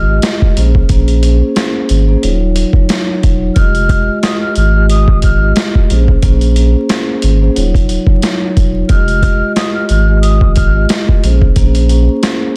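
A gritty, tough boom-bap hip-hop cut with a swung 16th-note feel, built on a sampler-style drum kit with a thumpy kick and high-tuned snare, compressed and pitched down and set up front in a large room, over a deep, thick saturated sub bass. A soft-mallet vibraphone with its motor off rings dark and smooth through minor-ninth chords with a cassette-tape tint, while a breathy, hollow concert flute carries the melody in its high register with vibrato and tape echo until 10.9 seconds. The dense, heavily limited master adds vinyl crackle and digital ambience.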